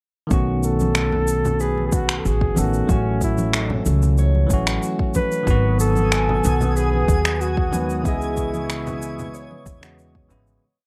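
Sunset chillout at 93 BPM in 4/4 with a straight, blissful feel, moving through B9, A6, G#m7 and C#m9 over a dark, warm production with light small-room ambience. A bell-like tine electric piano holds clean drop2 chords with syncopated pushes, while a woody, thumpy upright bass sits up front with long gliding pizzicato notes. A soft, deep electronic kick and a light lounge beat of shaker and finger snaps carry an overdriven grit, with ringing, dry congas under soft hands tucked in the background. A breathy flugelhorn takes the jazz-style solo, shaping motif-based phrases with vibrato and scooped notes through a digital delay, as a fingerpicked concert harp spins an eight-step arpeggio through tape echo in the distance. An airy, detuned pad with chorus enters at 5.5 s and a twinkling granular shimmer follows at 5.9 s, just before the piece begins fading out at 7.2 s.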